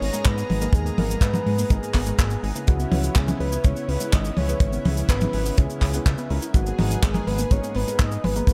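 A small-room funk kit of cabasa, handclaps, hi-hat and toms with gated reverb opens this melodramatic, danceable italo disco excerpt at 124 BPM in G# minor, alongside a fat, detuned analog bass with a filter sweep, a round, octave-layered synth lead with vibrato, chorus and delay carrying the melody, a lush, airy unison pad with chorus holding sustained chords, a very quiet, punchy sawtooth pluck playing arpeggios, and a dark, vintage grand piano adding stabs in the background over G#madd9 and C#m7. A tight, up-front acoustic kick drum enters at 0.3 s to drive the groove.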